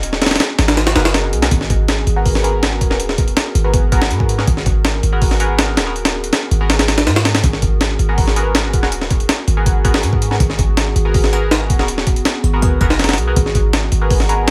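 Gritty, pitched-up breakbeat drums sit up front, with a thumpy kick and high-tuned snare driving this dark, frenetic drum and bass and jungle excerpt at 162 BPM in G# minor, while a deep, boomy 808-style sine bass with a noise layer booms underneath. A nasal, band-passed sawtooth chord stab enters at 0.7 s, treated with chorus, phaser and dub echo, and a drop arrives at 1.5 s. In the background, a warbling, nostalgic lo-fi pad of square and triangle tones sustains chords, opening on G#m9, with chorus, reverb and vintage 12-bit sampler grit, all in a dry, loud mix.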